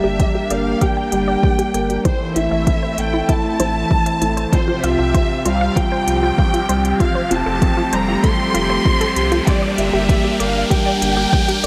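A punchy, up-front electronic kick and crisp, overdriven hi-hats enter at 0.2 s, setting a straight 4/4 pulse at 97 BPM for this moving, intimate piano-and-strings electronica build-up in G dorian, cut from a longer piece. A felt-muted upright piano plays a mellow riff under an expressive, bowed violin section melody with rich vibrato, while a round, deep analog bass and a thick, detuned sawtooth pad with chorus both pump against the kick through the Gm, Am, Csus4 and Fadd9 changes. A bright, warbling pluck sits in the background playing arpeggios with tape echo under a filter sweep, and an electronic riser enters at 2.9 s to build tension, all in a light reverb.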